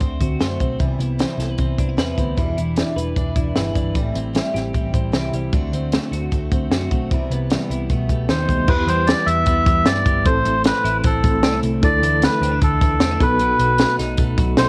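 Jangly indie pop with a wistful, restless air, cut from a longer piece and recorded at home on cassette: a bright, twangy twelve-string electric guitar spins arpeggios over a round, foam-muted bass and a dry cocktail drum kit with a high-tuned snare, while a full-bodied jumbo acoustic guitar picks its accompaniment until 8.7 seconds, when a worn, slightly out-of-tune reed electric piano with fast tremolo takes over in the background and a breathy, nasal melodica, entering at 8.3 seconds, carries the melody up front.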